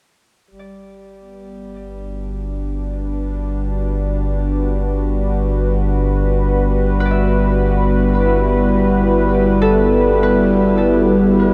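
In free time, this serene, weightless ambient passage in G major drifts on a held G69 chord, with a detuned sawtooth pad carrying chorus-soaked sustained chords up front, a round, tube-saturated analog bass anchoring a deep G, a reedy, breathing pedal harmonium drone, and ringing fingerpicked concert harp arpeggios trailed by delay, as the pad, harp and harmonium fade in from 0.5 seconds inside a huge, long-decaying reverb.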